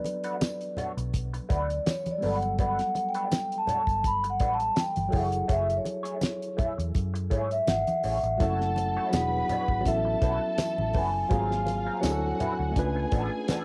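Smooth and cinematic, this lush 1970s-style soul excerpt moves at an unhurried 83 BPM in 4/4 with a light swing on the sixteenths, starting in F# phrygian before settling into F# minor at 8.4 seconds. A mellow vibraphone played with soft mallets carries the melody and takes a ringing, metallic solo through the first 8.4 seconds, over a worn, slightly out-of-tune tine electric piano that is lightly overdriven through its built-in speakers. A slightly broken-up electric guitar through a small old amp plays a compressed, fingered riff colored by wah and tremolo, while a damped 70s drum kit sits up front with a fat snare and tight kick, joined by a dark, round, foam-muted fingered bass. Thick-skinned congas played with soft hands and a jingly, saturated tambourine stay in the background, adding texture. At 8.4 seconds a dark, woody studio string section enters with bowed vibrato and tape echo, lifting the harmony through chords such as A69, G#13 and C#7b9b13. 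The whole piece carries the hazy character of a home cassette recording in a lightly reverberant room.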